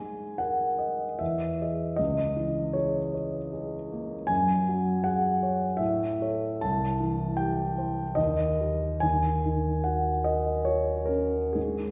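An intimate, up-front concert grand piano plays alone for 11.9 seconds in this nocturnal, mysterious fragment of impressionist solo piano, a 3/4 rubato drifting between 63 and 82 BPM, where deep bass and audible action noise sit inside a wet recital-hall reverb as the harmony wanders from G#sus2 through Emaj7 and C#m6 to an unexpected A, C and D# before settling on D#m7.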